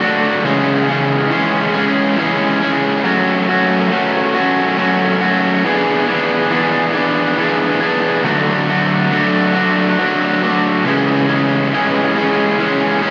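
A raw, bright, overdriven electric guitar, picked, double-tracked and up front with slapback echo, carries this soaring, euphoric rock excerpt alone from 0.0 to 13.1 s in a slow 6/8 at 46 BPM (dotted quarters), moving through C#m, F#m, E7 and D before returning to C#m, all bathed in a wet, digital scoring-stage reverb that gives it a big arena sound.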